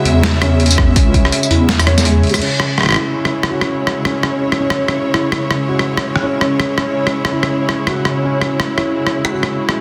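A rich, bowed string section holds sustained C# minor chords throughout, pumping against the beat, while a muted, mellow upright piano with audible action noise spins arpeggios through a low-pass filter and dub echo, its filter sweeping from 2.4 seconds on. This tense, dark half-time drum and bass cut at 165 BPM opens on a drop where a deep, chorused wobble bass and a hard-clipped electronic kick come in, the kick dropping out at 2.1 seconds and the bass stopping at 2.4 seconds. A gritty, pitched-down sampler-style kit with a soft-clipped snare, rim click, hi-hat, tambourine and crash keeps a swung groove up front in a lush hall reverb and a dense, heavily limited mix.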